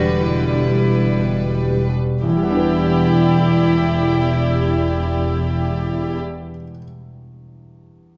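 Cinematic and bittersweet, this short excerpt cut from a longer piece moves at a rubato 56-64 BPM in 3/4, in E minor, opening on an Em7 chord and slowing down through its first 2.2 seconds. A solo cello carries the melody with a distant, floating tone played sul tasto, joined by a pure symphonic violin section holding D5 up close, while an intimate studio violin section traces a second line between G4 and B4. Beneath them, a studio viola section with light vibrato fills in the accompaniment, a dark cello section with a smooth top sits in the background on the bass, and a rich double bass section anchors the low end on E1. A felt-muted upright piano adds mellow, hushed accompaniment from the background, and a ringing, fingerpicked concert harp plays arpeggios across a broad range. The bowed strings stop at 6.2 seconds, the harp rings until 6.9 seconds, and the piano lingers alone until 8.2 seconds, all bathed in a wet concert hall reverb that gives the longing mood a spacious glow.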